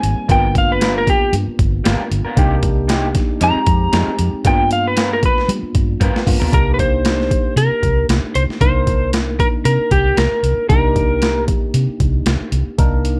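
Brooding and mournful, this short cut of straight-eighth soul blues in C minor at 115 BPM features a dark, slightly broken-up electric slide guitar soloing up front until 6.5 seconds over a barky, lightly overdriven tine electric piano, a round, punchy foam-muted vintage bass, a gritty, pitched-down boom bap sampler-style kit with a thumpy kick and high-tuned snare, and lo-fi stabs from an electric guitar through a small old amp, with piano and drum fills closing the first half before the slide guitar drops out at 11.4 seconds.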